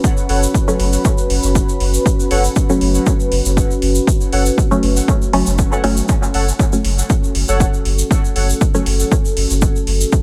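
A punchy, tape-warm kick drum sits up front in this hazy, hypnotic dub techno excerpt, joined from 0.3 seconds by a deep, smooth sine sub bass that pumps with sidechain. Muted sawtooth chord stabs trail dub echo, phaser and chorus above a moody, full-bodied analog pad with a slow attack, while a grainy, vintage egg shaker and overdriven metallic hi-hats add texture. Warbling, nostalgic lo-fi synth keys play a detuned, wave-folded riff until 8.5 seconds, washed in chorus and echo, all set in a lightly reverberant space.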